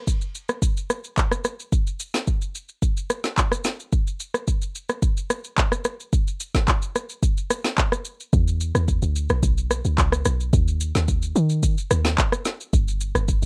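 A rough home-demo mix with light reverb carries this relaxed, soulful amapiano fragment, where an up-front electronic afro-pop drum kit of deep kick, woody snare, handclaps, rim click and shaker plays alone until a dark, round log drum bass with a fast, percussive attack and a noisy FM edge enters at 8.3 seconds.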